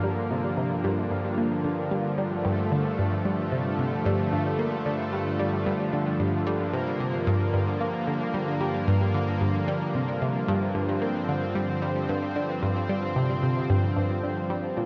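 From the first moment, a thick, warbling unison pad holds sustained Gm7 chords with a slow attack and long release while a round, nasal analog pluck plays a riff alongside it, opening this cosmic, expansive stretch of ambient, sequencer-driven space music in G minor at 112 BPM in a straight 4/4. The pad sits bright and up front, its detuned sawtooth voices thickened by chorus, while the pluck's filtered sawtooth tone, with its fast attack and decaying notes, picks up chorus, phaser, gritty 12-bit sampler texture and tape echo. A lush hall reverb with a 2.8-second tail and a cassette-tape finish give this 14.9-second excerpt its vintage, floating character.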